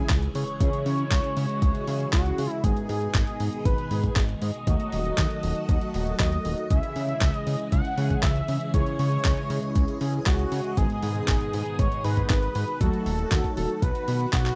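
A thick, nasal unison lead carries the melody through this bittersweet, nostalgic italo disco excerpt, its detuned sawtooth tone coloured by vibrato, cassette tape grit and tape echo. Beneath it, a phased string machine swirls in the background with soft-attack sustained chords, while mellow synth brass adds dark, round stabs treated with chorus and phaser, and a fat analog bass with tube saturation and filter sweeps anchors the low end. A very quiet sub drop marks the opening, and a thumpy, overdriven electronic kick joins the gritty sampler-style kit of handclaps and hi-hat, all in a dry, close 1970s-style studio sound.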